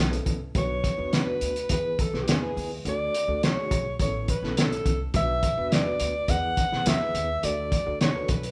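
A warm alto saxophone with vibrato sings the melody up front from 0.6 seconds in this driving, urgent excerpt of uptempo 1960s-style soul at 105 BPM in B dorian, over a barky, reedy electric piano with light overdrive and fast tremolo, a woody, thumpy pizzicato upright bass, and a muffled, gritty drum kit with a fat snare and tight kick, all played live together in a large studio with moderate reverb and a rolled-off top.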